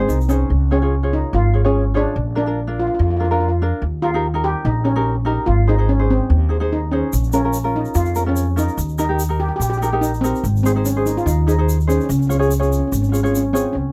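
A shimmering double-second steel pan, played with soft rubber sticks, carries an airy, mellow melody over thumb-plucked ukulele and a woody, up-front pizzicato upright bass in this bouncy, sunny calypso excerpt at 145 BPM in Db major, with a grainy egg shaker heard briefly at the start and returning from 7.1 seconds, all set in light reverb with close, detailed sound.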